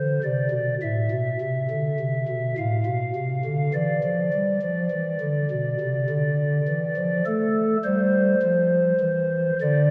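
A solo pipe organ on a soft, hollow stopped-flute stop opens this grave, solemn chorale-style classical excerpt, its mellow baroque voicing carrying chiff and a tremulant as it sits up front in the mix. In a slow 4/4 with rubato, the harmony moves from a rootless A minor through D minor over A and a bare E fifth before settling back on A minor at 7.3 seconds. A long, wet church reverb of 2.8 seconds and a dark production wrap the organ in a shadowed, solemn space.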